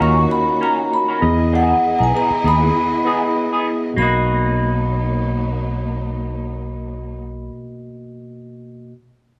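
Warm and romantic, this brief slice of lush 1970s-style soul sets a mellow, ringing soft-mallet vibraphone melody over a gritty, barky overdriven tine electric piano heard up front, distant bowed strings sustaining chords with vibrato and portamento, a clean picked electric guitar riff through wah, and a round, dark fingered electric bass, the band playing together in a large studio room as the harmony moves from D#m7 to Emaj7 before settling on Bmaj7 at 4.0 s, with the electric piano carrying on alone until 8.9 s.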